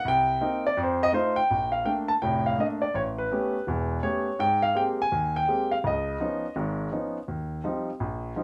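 A swinging 4/4 pulse at 166 BPM drives this short cut from a longer solo jazz piece, playful and relaxed, with a concert grand piano carrying everything from deep bass around E1 up to A5. The piano sits up front with an intimate, natural tone, long sustain and audible action noise, moving from Cm7 and F7 into Bbmaj7 at 1.5 seconds, then through A9, Abmaj9 and Db9 before landing on Eb69. A wet studio reverb surrounds it, and the rough home-demo mix keeps it feeling close and informal.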